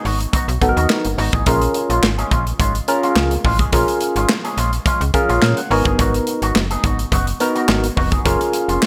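Funky and late-night in mood, this short clip of early-eighties boogie funk rides a straight 4/4 groove, set in a bright, digital 1980s-style production with a moderate plate reverb. A modern studio drum kit sits up front, its punchy kick, medium-tuned snare, hi-hat and handclaps captured in an airy, polished room. Beside it, a slap-like FM bass brings a snappy, metallic, decaying tone. A barky tine electric piano, lightly overdriven through a combo amp and coloured by a phaser, supplies the accompaniment from 0.6 seconds and plays a fill between 5.1 and 6.0 seconds. An electric guitar carries the riff with a clean, picked, twangy tone, shaped by an envelope filter, compression and a lush chorus. The harmony moves from G#m7 to A#m7, back to G#m7, and closes on F#maj7.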